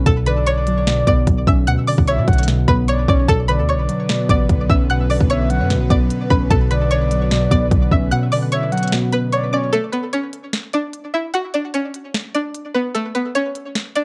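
A string-like resonator pluck, warbly lo-fi synth keys and a hard-hitting 808-style bass open this melancholic, eerie trap excerpt together, with the electronic drum kit entering a moment later at 149 BPM in a half-time 4/4 feel, in B minor and tuned slightly sharp of standard pitch. The bright, twangy pluck carries the melody up front with chorus and digital delay, while the dark, nostalgic square-and-saw keys sit beneath it with their own chorus, and a breathy, flute-like synth lead with vibrato traces a soft second line, also washed in chorus and delay. The drums hit hard, with a clipped kick, sharp snare and crisp hats, and the punchy, heavy sine bass strikes with a fast attack and decaying tail before dropping out at 8.1 seconds. From 3.8 seconds an airy, detuned pad adds slow-blooming sustained chords in the background. Around 9.7 seconds the keys, lead and pad stop, leaving the pluck and drums to carry the closing stretch, all of it kept fairly dry and coloured by worn cassette tape with a wavering pitch drift.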